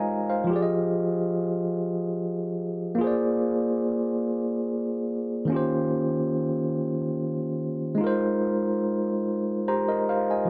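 A lone tine electric piano opens this late-night R&B fragment, its warm, clean tone coming through the instrument's built-in speakers and sitting up front in a dry, close 1970s-style studio sound touched by light reverb. The piano plays solo throughout, moving slowly in 6/8 at 48 BPM counted in dotted quarters, with a straight, sultry feel and tuning set to A4 = 441 Hz. Its voicings range from Eb3 to Bb5, drifting through Ab69, Fm9, Bb7 and Eb13 before settling back on Ab69. Near the close, the piano adds a fill from 9.3 to 10.5 seconds. Cut from a longer piece, the passage feels intimate and unhurried.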